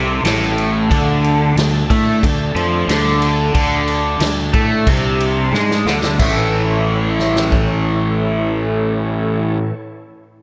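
This raunchy blues rock and southern rock excerpt rides a straight, driving 4/4 groove, with a punchy vintage drum kit with dark cymbals entering at 0.2 seconds and playing a fill at 5.5 seconds before the drums drop out at 7.7 seconds, while a bright, double-tracked cranked stack guitar plays an overdriven, phased riff up front over a fuzzy fingered electric bass and a gritty tonewheel organ holds sustained chords through a slow rotary speaker in the background, all set in a lush hall for a big arena sound.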